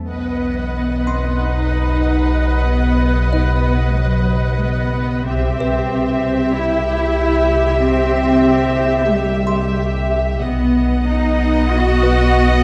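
An uneasy, eerie cinematic fragment at 93 BPM opens with a lush, up-front cello section over a metallic, inharmonic drone carrying chorus and its own reverb; at 0.1 s, bowed violins join with a focused vibrato melody and a faraway second line, along with a clear viola section and a smooth, even double bass section, while a delicate, tinkling music box enters in the background at 1.1 s as the harmony moves from B to C at 5.3 s and back to B, within a dark production and a moderate concert hall reverb.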